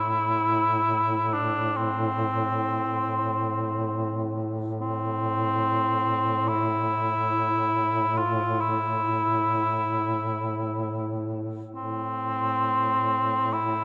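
A warm duduk holds a low A2 drone with a smooth top and vibrato, while a mellow cor anglais sings a mournful, longing melody between C4 and F4 in a classical style, with light vibrato and a punchy edge. This Caucasian folk lament in A minor moves in free time, both instruments playing up front for the full 13.8 seconds of this section cut from a longer piece. A dark production and a wet church reverb with a 3.6-second decay give the sound a spacious, sombre glow.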